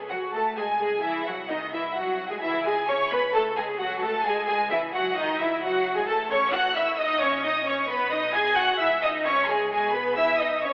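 A quick classical-period movement for string orchestra in C# minor, this spirited, cheerful passage moves at 131 BPM in 4/4 with a rubato feel, cut from a longer piece. Clear first violins carry the melody up front with intense vibrato, while a second violin section, equally clear but set in the background, supplies a supporting line beneath them. Rich, smooth violas fill in the accompaniment at the same level as the melody, and a lush cello section adds a distant, even bass, with woody double basses sitting very low in the mix. The harmony moves from F#madd9/C# and G#7/B# through C#m, A and B before returning to C#m and closing on G#m/B. Everything sits in a wet concert hall reverb, yet the overall sound is filtered to a thin, telephone-like quality that gives the lush ensemble an oddly boxed-in character.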